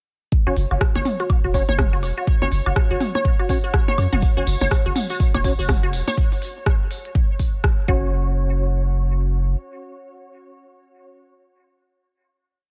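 A squelchy, resonant blip pluck drives this sparse, hypnotic minimal techno piece at 123 BPM, its six-step loop drifting against the bar through phaser, gritty 12-bit sampler crunch, dub echo and sidechain pumping, over a deep, up-front four-on-the-floor kick and a punchy sine sub bass rolling in staccato. Clicky programmed hats and rim clicks, overdriven woodblock, conga and tom blips in cross rhythm, and hollow, nasal organ-like chord stabs moved in parallel with chorus and tape echo fill the sparse, dry space, while a bright, chorused gated texture holds a high note in the background and a jingly, band-limited tambourine plays sixteenths from 4.2 to 6.2 seconds. After the drop ends at 8.1 seconds, a final hit lets the organ stabs ring on until 11.3 seconds.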